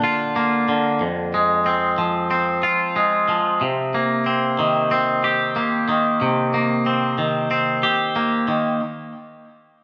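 A clean, twangy electric guitar sits up front picking melancholic arpeggios through a digital delay and a large, wet studio reverb, moving from Bb to Fm and settling on Cm7 in this cinematic rock excerpt in C minor at 92 BPM, which runs 8.8 seconds.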